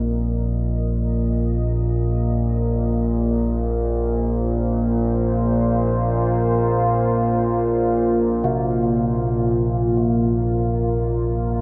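Dark ambient drone, unsettling and cavernous, heard as an 11.6-second portion of a longer piece tuned to A4 = 439 Hz. Up front, a deep, moody pad fades in over the whole span, its detuned sawtooth unison and sub octave giving it a mellow body, softened further by chorus and its own reverb. Alongside it, also up front and lower in pitch, sits an analog drone, vintage and warbling, with evolving pulse-width modulation, a slow attack and a long release, also treated with chorus. Further back, a gamelan-type bronze metallophone rings out metallic arpeggios struck with a wooden mallet, its notes trailing through delay. A huge, wet reverb with an 8.4-second decay surrounds the sound, making the space feel vast and shadowy.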